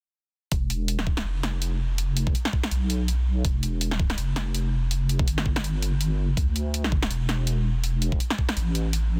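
This is half-time drum and bass at 164 BPM in 4/4, with a light swing on the sixteenths and a half-time feel, set in E phrygian for a tense, cinematic mood. An overdriven electronic kick drum sits up front with a knocking, layered punch, playing from 0.5 to 8.5 seconds. Alongside it, a produced drum kit adds a woody snare and bright hi-hats, also overdriven, sitting a little further back in the balance. A deep, soft wobble bass built from triangle and sine tones holds the low end between E1 and D2, its fast attack and sustained, compressed body shaded with chorus to give a dark, warm heft that carries on until 9.2 seconds. The sound is dry and dense, with a heavily limited modern master, and the short piece is cut from a longer track.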